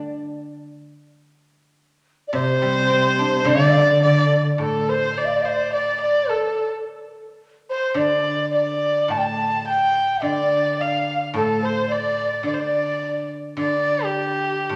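Chinese traditional chamber music in D yu mode, wistful and graceful, moving at 107 BPM in 2/4 with a rubato feel, heard as an excerpt cut from a longer piece. A ringing, silvery guzheng played with fingerpicks carries the accompaniment throughout, and from about 2.3 s a dark, woody cello bowed sul tasto adds a brief second line while a mellow, hollow large bamboo dizi with a buzzing membrane sounds distant with vibrato until 13.3 s. Above them, an intimate, up-front erhu takes the melody with light vibrato, portamento and an airy bow, all wrapped in the wet reverb of a recital hall.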